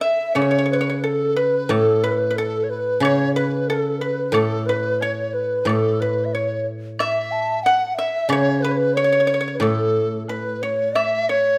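A moderate recital hall reverb surrounds close, detailed microphones in this short cut from a longer Chinese traditional chamber piece, pastoral and festive in mood, moving at 91 BPM in 2/4 with a rubato feel in A gong mode. The low xiao carries the melody from the first moment, its end-blown bamboo tone airy and expressive with vibrato and a crisp attack, though it sits somewhat in the background. Alongside it, a large dizi adds a second line in a pure, hollow voice with a buzzing membrane, vibrato and a soft attack, while the pipa traces another second line with fingerpicks in a dry, percussive manner. From 0.4 seconds the guzheng sits up front with low accompaniment, its fingerpicked strings ringing and silvery. A woodblock with bright cymbals joins at the same point from further back, keeping a small-room percussive presence until 11.1 seconds, and the ensemble plays on to the cut at 11.6 seconds.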